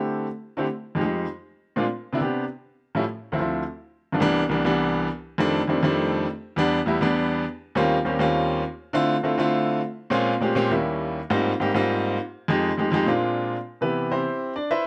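Sophisticated and sunny, this brief jazz excerpt in C major moves at a brisk 203 BPM with a straight 4/4 feel, as a solo baby grand piano, clear and intimate with audible action noise and long sustain, sits up front in light reverb, running from C2 to E5 through rich harmonies like D7sus2, Eb7b9 and Abmaj13 before settling on Cmaj7 at 13.7 seconds.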